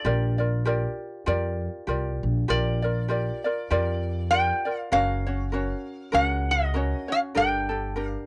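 A lightly swung 4/4 lilt carries this dreamy, relaxed Hawaiian fragment from a longer piece, where a bright, nasal metal-body resonator slide guitar sings the fingerpicked melody up front over a light, fingerpicked ukulele accompaniment and a woody, dark pizzicato upright bass that stops at 8.1 seconds, moving from Bb6 to Gb and Gmadd9 in a dry, close 1970s-style studio sound.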